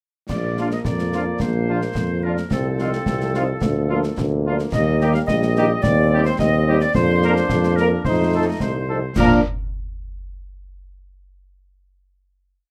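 A short, complete military-style march for wind band in Bb major, rousing and festive at 108 BPM in a straight 2/4, built on a brief strain that closes on a final Bb chord at 9.2 seconds. The warm, up-front tuba anchors the bass on the beats with vibrato, while a close, dry marching snare rides over bass drum and dark clash cymbals, a clear, present trombone section holds sustained chords in the background, and a smooth-topped woodwind section adds a soft second line. From 0.6 seconds a mellow, somewhat distant trumpet section carries the melody with light vibrato, supported by roomy French horns playing after-beat chords, all under light reverb and detailed, close microphones.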